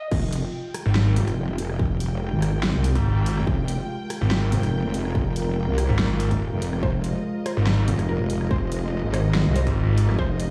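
A snarling, growling distorted saw bass dominates this chaotic, heavy wobble dubstep drop in F minor, arriving at 0.9 seconds and riding over a saturated, detuned wobble bass, a distorted electronic kick and a layered drum kit with a huge snare and bright hats, all at 143 BPM in a swung half-time feel. Behind them, a dark, morphing wavetable pad and an intimate bowed string section pump to the sidechain, while a punchy, warbling unison pluck with digital delay flickers briefly at the very start and returns at 6.8 seconds to carry the melody. The whole excerpt sounds as if played on a big sound system in a bare stone room.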